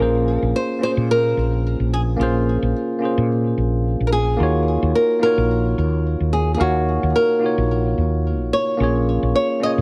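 Sunset chillout with a relaxed, smooth mood, moving in 4/4 with a gentle sixteenth-note swing. A fingerpicked nylon-string guitar carries the melody up front, its small, acoustic tone trailed by a delay. Beneath it, a tine electric piano plays clean accompaniment through a combo amp, with its own digital delay adding echoes. A woody fretless electric bass anchors the low end slightly louder than the other parts, sounding round, punchy and hollow-bodied. The harmony moves from Bbm9 to Ebm9 at 4.4 seconds and lands on Bbm7 at 8.8 seconds, all bathed in a moderate plate reverb. This short excerpt is cut from a longer piece, with all three instruments playing together from the very start to the end.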